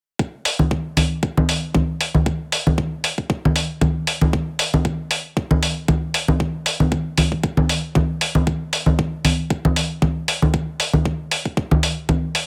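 A thumpy, sampler-style electronic kick drum, re-recorded in a large room and high-pass filtered, opens this cosmic, sensual nu-disco excerpt at 116 BPM in 4/4 with lightly swung sixteenths; it is joined at 0.5 s by a gritty, compressed, tape-toned electronic hi-hat and at 0.6 s by close, ringing, low-tuned acoustic congas played with hard hands, all three sitting up front in a dry mix.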